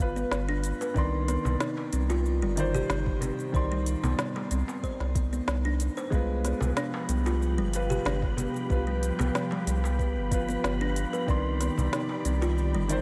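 Organic downtempo excerpt at 93 BPM in C harmonic minor with a mystical mood, where a mellow felt-muted upright piano with delay and shimmer reverb and a woody, ringing kalimba playing arpeggios sit over a round, deep analog bass pumping from the sidechain, an overdriven organic electronic kit with a woody snare, crisp hi-hat and shaker, a hard-handed metal-shell darbuka, and a soft overdriven electronic kick entering at 1.0 s, before an ethereal detuned pad and a breathy, wind-like tuned noise texture drift in at 6.9 s, all soaked in a lush hall reverb.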